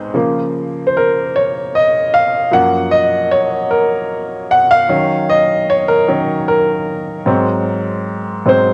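A home cassette recording bathed in a wet spring reverb gives this short gospel fragment a vintage sound. A lone upright piano, clear and woody, sits up front and plays solo from 0.1 seconds, moving through Db6, Gbmaj7, Ebm7 and Ab7 in a slow, soulful 6/8 at 50 beats per minute in Db major. The mood is uplifting, and the fragment is cut from a longer piece.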